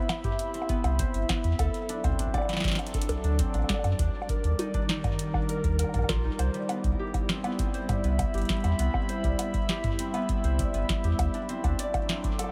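Lightly reverberant, this short IDM excerpt at 100 BPM in 4/4 has a wistful, intricate mood rooted in C lydian. A warbling, detuned tape-like pad holds sustained chords throughout, its slow-attack tone softened by chorus and shimmer reverb and roughened with vintage 12-bit sampler grit. A fingerpicked concert harp rings out in arpeggios alongside it, trailed by delay and its own shimmer. A booming analog drum machine sits up front with a tonal snare, metallic hats, bongos and toms. It is joined by a deep electronic kick, while a round, sine-like sub bass enters at 0.8 seconds with tube saturation and sits prominently beneath everything. The harmony moves from Cmaj7 to D7 and Ebmaj7 before returning to Cmaj7, then D7 again at 11.2 seconds as the fragment is cut off.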